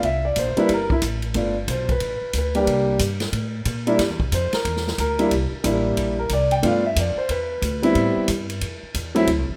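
A concert grand piano leads this brief cut from a longer jazz piano trio performance, carrying the melody as a solo with an intimate, up-front, vintage tone, deep bass and audible action noise. The mood is swinging and sophisticated, with a 63% swing on the eighth notes in 4/4. Underneath, an upright bass plucked on gut strings gives a woody, dark and thumpy foundation, while an acoustic drum kit in a big-band style keeps time on hi-hat, ride cymbal, a medium-tuned snare and a boomy kick. The harmony moves from C7 to Gadd9 and C9, then to G7 at 6.6 seconds and Am7 at 8.0 seconds. Moderate plate reverb and a small room ambience surround the trio in a rough home demo mix, with the bass lingering slightly past the others to close at 9.6 seconds.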